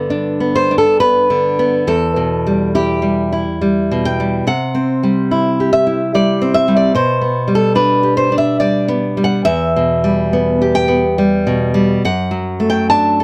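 Flowing in an unhurried 3/4 at 71 BPM with uneven, rubato beats, this tender, nostalgic romantic piece for solo classical guitar presents a fingerpicked nylon-string guitar, full-bodied and warm with fresh strings, moving through G, Em, C and D/F# in G major from E2 up to A5, its finger squeaks caught by close, detailed microphones that keep it up front within light reverb across a 13.2-second fragment cut from a longer work.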